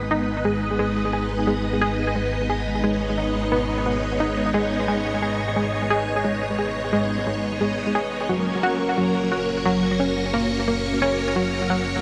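A lush, bright string machine sits up front in this cosmic, hypnotic stretch of ambient, sequencer-driven space music, holding full sustained chords through a phaser and ensemble chorus. Beneath it, a vintage analog drone warbles and evolves low in the bass, its pulse-width-modulated tone thickened by chorus and tube saturation. A round, detuned analog pluck carries the riff from 0.1 to 11.8 seconds, its fast attack and short decay colored by a filter sweep, chorus and tape echo. The music moves at 88 BPM in a straight 4/4 in G# minor, resting on G#m before shifting to F# at 8.3 seconds. A lush hall reverb soaks the dreamy mix, and the passage is cut from a longer piece.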